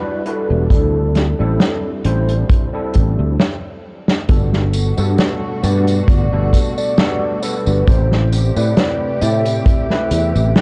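A slow 67 BPM pulse in 4/4 with a light swing on the sixteenths sets this faded, dreamy vaporwave fragment in G major, cut from a longer piece and wrapped in a dark, cassette-tape production. An up-front acoustic kit played with bundle sticks in a small room carries hi-hat, a medium-tuned snare and tambourine, with a tight kick joining at 0.7 seconds, the drums roughened by vintage 12-bit sampler grit. A growly, punchy fretless electric bass sits prominently underneath with ensemble chorus, while a bright, barky overdriven tine electric piano, heard through a combo amp with its own sampler grit and chorus, fills in the harmony over Em9 and D7sus4. A velvety, wave-folded synth lead sings the melody with vibrato, chorus and tape echo. After a drum fill and stop between 3.4 and 4.3 seconds, the music moves to Gmaj9 and later Am7 as a lush, bowed string section enters softly beneath with sustained, vibrato-rich chords.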